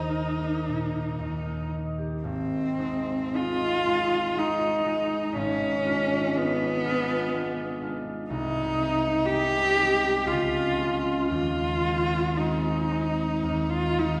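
In a slow, freely breathing 3/4 at around 52-62 BPM, with generous rubato, this serene, lyrical romantic duo for cello and harp unfolds in Ab major, tuned to A4 = 444 Hz. A single bowed cello carries the melody up front and close, its tone warm and expressive, with a soft attack, vibrato and gentle portamento sliding between notes in its compact range from Cb4 to G4. The concert harp accompanies throughout, also up front, its thumb-plucked acoustic strings ringing across a broad span from the deep Ab1 up to C5. The harmony opens on a suspended Eb chord resolving to Eb, then settles into Ab at 2.2 seconds before drifting through Abdim7, Ab/C, Bbm7/Db and Ab/Eb and returning to Eb. The performance sits in a concert hall or church with a wet, lingering reverb, and this passage is a 14.2-second portion cut from a longer piece.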